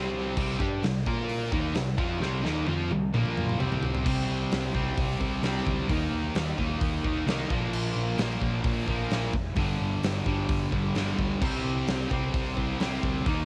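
Three overdriven guitars open this menacing, driving hard rock excerpt with power-chord riffs: a bright, double-tracked distorted part, a sludgy, dark one in the background, and a crunchy one that is very quiet, all over a round, amped hollow-body short-scale bass. At 0.4 seconds a huge, hall-filled arena drum kit enters up front with a punchy kick, medium-tuned snare, bright cymbals and toms, colored by cassette tape. A drum fill from 2.2 to 4.1 seconds launches the riff into its second section, heard through the ambience of a home cassette recording.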